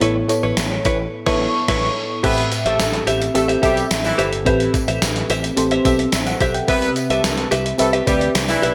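A round, dark FM electric piano with chorus and phaser sits up front in this glossy, nostalgic 1980s-style pop excerpt at 108 BPM. It is joined by a clean, compressed electric guitar riff with lush chorus and delay, a direct fretless bass, a thumpy sampler-style drum machine with a gated reverb snare, and a jingly tambourine in the background, while a band accent lands at 1.1 seconds and a tight, punchy horn section with light vibrato enters with stabs at 2.2 seconds as the chords move from Aadd9 to Am7 and Cmaj7 in a lush hall reverb.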